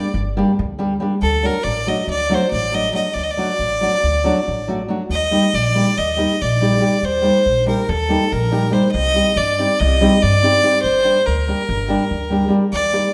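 A small acoustic trio sits in a reverberant recital hall, the room's wet tail ringing around the players. This Balkan wedding-band piece in 9/8 is cut from a longer performance; it feels virtuosic yet bittersweet, and it gathers speed from start to finish. A single bowed fiddle carries the melody up front, its tone clear, earthy and close, with light vibrato. Beneath it, a fingerpicked classical nylon-string guitar on old strings gives woody accompaniment, while a pizzicato upright bass with gut strings supplies a dark, thumpy low end. The harmony opens on G minor and D, then turns at 5.1 seconds through E-flat and C minor before settling back on G minor at 10.8 seconds.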